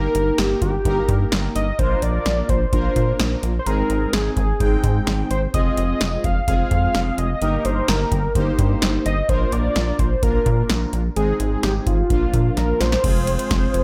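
A straight, driving pulse from a dry, up-front analog drum machine with a deep kick, punchy snare and metallic hats anchors this melancholic synth-pop clip, where a rubbery, bouncy square bass sits forward beneath fat, detuned synth brass treated with chorus and phaser, a thick, ring-modulated unison lead carries the melody through analog delay, a short drum fill arrives at 12.6 seconds, and the whole dreamy mix is soaked in plate reverb.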